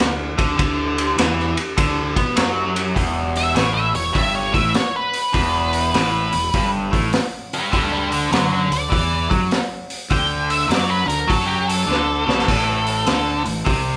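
Blues rock in a power-trio mould with a southern rock lean, this raunchy, driving passage moves at 101 BPM in 4/4 with a swung eighth-note feel, cut from a longer piece. A biting, overdriven rhythm guitar, picked and double-tracked, carries the riff up front across the whole span, while a growly fuzz bass, fingered and direct with amp overdrive, sits beneath it with a bright edge. The vintage acoustic drum kit sounds punchy and dark-cymballed, with a medium-tuned snare, a pumping small-room character and a rolled-off top, and it adds a fill from 11.9 to 12.5 seconds. An octave-fuzz lead guitar, dark and distorted, enters at 3.4 seconds to take a picked solo over the changes, which open on D69 before moving through E5, D5 and A5. The band plays live together in one room with light reverb.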